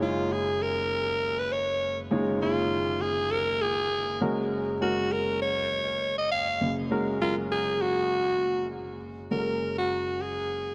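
A steady 4/4 pulse with a light swing on the sixteenth notes carries this short pop excerpt, which feels nostalgic yet uplifting. A raspy, gritty alto saxophone takes the solo melody up front, its edgy, punchy pop tone sitting clearly above the accompaniment. A baby grand piano supports it throughout, intimate and natural, with the noise of its action audible close in the mix. The harmony rests on a C#add9 over an F# bass before settling onto F#add9 at 4.2 s, and a new section begins at 9.3 s shortly before the cut. A moderate, lush hall reverb with a long tail surrounds both instruments, and the overall production is dark and warm, tuned to A4 = 436 Hz.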